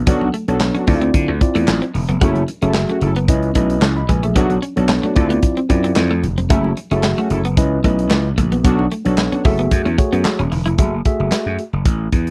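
A funky, late-night groove in early-eighties boogie funk style, this excerpt of a longer piece rides a straight 4/4 over lush minor-ninth chords such as Bm9, Dm9, F#m9 and C#m9. A modern studio drum kit sits up front with a punchy kick, medium-tuned snare, hi-hat and handclaps, its top rolled off, while a gritty slap bass, overdriven and growly, carries the low end just as prominently. A tine electric piano through a combo amp supplies the accompaniment, and a clean, compressed electric guitar plays a picked riff bathed in lush chorus until 10.8 seconds. Alongside them, a fat, nasal analog synth brass line with detuned sawtooth tone, vibrato and chorus holds a bold second line until 9.6 seconds, and very quiet congas with hard hands add thick-skinned percussion underneath. The dry, close recording has little reverb, and for the final stretch the drums, bass and electric piano carry on after the other parts have stopped, with the piano dropping out shortly before the end.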